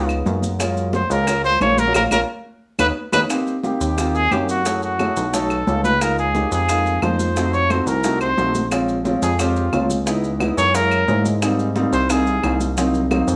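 Afro-Cuban jazz with a sophisticated, danceable character, heard as a short cut from a longer piece. A breathy, punchy trumpet carries the melody up front with a jazz-style vibrato. A band accent arrives at 1.9 seconds and a drum fill follows before the trumpet moves into a solo at 3.3 seconds. An intimate concert grand piano with audible action noise and deep bass supplies the chords, and a glossy, nasal synth bass with chorus and a retro filter pluck sits prominently beneath. The percussion blends thick-skinned, high-tuned congas and woody claves in the background with very quiet, tight bongos and grainy, mellow maracas heard close and dry. A moderate studio reverb gives the whole band a polished sense of space.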